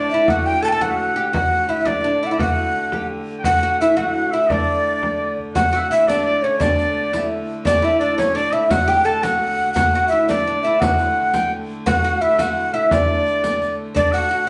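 A breathy, mellow tenor recorder leads this rustic, festive medieval dance, sitting up front with a hollow tone, a crisp, chiffy attack and vibrato. A bright shawm shares the same register as a second line, distant and roomy with light vibrato and scooped notes, while a fretless, plectrum-plucked oud adds a woody, double-strung second line below, and a clear, nasal hurdy-gurdy holds an earthy, airy-bowed drone underneath. A deep frame drum played with soft hands enters at 0.3 s close to the listener, and a riq's jingles join from the background at 5.6 s as the opening section repeats. The band moves at 114 BPM in a straight 6/8, in D major, tuned to A4 = 438 Hz. Heard live in one room, the sound is bathed in a wet, large studio reverb with a softened top end, and the passage is cut from a longer piece.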